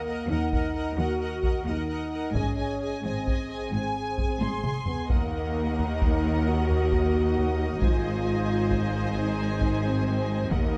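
A relentless 12/8 pulse at 88 BPM drives this epic orchestral film-score cue in Eb dorian, moving between Ebm and Ab: taiko drums struck with heavy sticks enter at 0.5 seconds and play a fill at 4.4 seconds beneath lush, warm violins carrying the melody, a distant second violin line, focused violas, sustained French horn chords and a bowed bass of cellos and double basses, and then a smooth studio string section and a mellow, roomy tuba join at 5.1 seconds.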